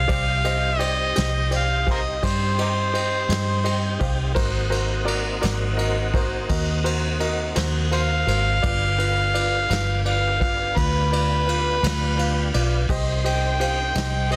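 A dense, heavily limited studio mix with reverb frames this mournful, smoky slow blues in C minor, a 14.4-second cut from a longer piece moving at 56 BPM in 12/8 through Cm, Ab7 and G7. An amplified, gritty, overdriven harmonica with light vibrato and tongue slaps takes a jazz-style solo up front over round, foam-muted electric bass, while a smooth tonewheel organ with chorus vibrato and a slow rotary speaker sits in the background. A clear, worn grand piano accompanies and adds a fill from 3.3 to 4.4 seconds, and a vintage brush kit with a punchy kick, dark ride cymbal and soft-clipped snare pumps in a small room with a rolled-off top.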